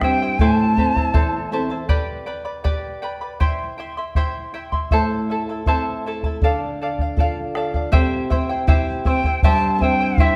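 A bright, airy cane quena opens this wistful, earthy Andean folk fragment over the shimmering double strings of a fingerpicked charango up front, a small-sounding fingerpicked nylon-string guitar, and a round bombo. The quena sings briefly with gentle vibrato and a soft attack, then drops away, and once the guitar also falls silent, the charango and bombo carry the progression until the guitar rejoins at 4.9 seconds. The quena returns at 9.1 seconds, and a wet recital-hall reverb lends the whole ensemble a spacious glow.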